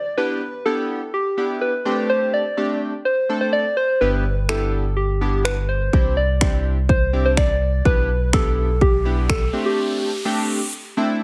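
A brief downlifter opens this carefree, summery dance-pop excerpt as a round, gentle synth lead with a keys-like, FM-tinged tone carries the melody, joined at 0.2 seconds by glossy, chorused retro synth keys whose pulse-wave shimmer pumps against a sidechain. The chords move through a breezy G6/B, D7sus4, G6 and Cadd9 progression, giving the harmony a sunny, open lilt. At 4.0 seconds a deep, sine-toned sub bass doubled at the octave arrives, also pumping, and a punchy house kit of kick drum and finger snaps follows soon after, sitting up front in the mix. A riser builds from 9.0 seconds, the drums and bass drop away, and the lead and keys carry on into the closing break as the riser completes its climb. Light reverb lends the whole a polished, airy sheen.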